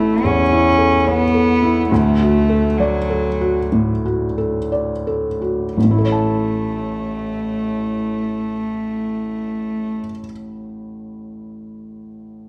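Neoclassical piano and strings in a hopeful, intimate mood, played with a rubato feel and slowing over the opening 5.8 seconds in a passage cut from a longer piece. A felt-muted upright piano with a mellow, vintage tone and audible action noise carries the accompaniment up front until 12.5 seconds, while a single bowed cello, played sul tasto with a nasal, floating purity, sings a close second line that stops at 10.0 seconds. The harmony moves from A to D and back to A, set in a moderate recital hall reverb.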